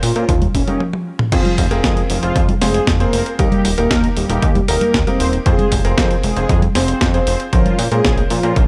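Bittersweet and melodramatic, this italo disco excerpt in F minor moves at 116 BPM, with a round, detuned synth brass melody bathed in chorus and delay over clear grand piano stabs with delay, a glossy, nasal chorused synth bass, and a tape-tinged 12-bit drum machine of congas, hi-hat, snare, toms and crash in studio reverb, joined at 0.3 seconds by a punchy analog kick, as a drum fill and stop from 0.8 to 1.3 seconds lead into a passage alternating between Fm and Eb before a closing Bbmadd9.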